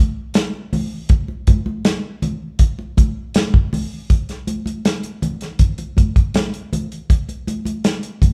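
A straight, unhurried soul groove in 4/4 sets a romantic mood, carried by an up-front acoustic drum kit whose hi-hat, tight kick and medium-tuned snare sound dry, dark and smooth with a rolled-off top, entering at 0.3 s. Close, high-tuned congas join at 0.5 s, their thin skins bright and damped, sitting much lower in the mix beneath the kit. The band plays live in one large studio with a moderate reverb, shifting into a second section at 4.1 s in this short cut from a longer piece.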